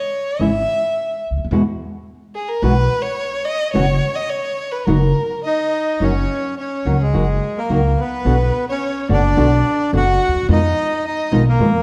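This tango has a passionate, elegant character and a rubato feel, taken from a longer piece. A single bowed violin opens with a smooth, even solo sung close to the ear with vibrato. A dark, thumb-plucked flamenco guitar and a woody pizzicato upright bass join at 0.4 seconds; the bass sits up front in the low register. The reedy bandoneon enters at 5.5 seconds to take over the melody, also placed up front, while the violin continues as a second line. The harmony moves from C#m through F#sus4 and F#6 toward Bm and a closing Fm7b5, all framed by a moderate recital hall reverb and a warm production.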